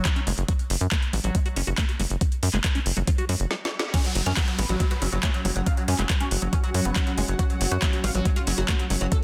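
Psychedelic trance with an alien mood, cut from a longer piece, in which a squelchy, resonant liquid acid bass riff with phaser, sidechain pumping and tape echo rides over an overdriven, knocking electronic kick, an overdriven garage drum kit of woody snare, metallic hi-hats, handclaps and crash cymbal, and a punchy, up-front sawtooth sequencer bass, until a drum fill and stop give way at 3.9 seconds to a drop where a bright, fretless oud melody with phaser, sidechain pumping and digital delay enters over a background downlifter, joined at 5.4 seconds by a blurred, evolving granular cloud pad with built-in reverb, all set in light reverb under a dense, heavily limited modern master.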